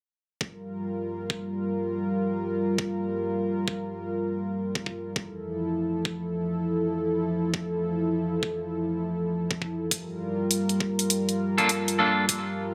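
This funky, playful glitch hop excerpt opens at 0.4 s with a smooth, detuned sawtooth pad holding slow-attack chords over a sub octave, its chorus-thickened tone pumping against a knocking, layered electronic kick. The harmony moves from Gm7 to Fmaj7 and back to Gm7, with a swung sixteenth-note feel in common time. Bright, up-front electronic hi-hats join at 9.9 s, adding a brighter top layer. Near the close, a clean, picked semi-hollow electric guitar jabs in with short stabs from 11.6 s, carrying delay and the same sidechain pumping as the pad. A lush digital hall reverb gives the whole mix a glossy 1980s-style sheen.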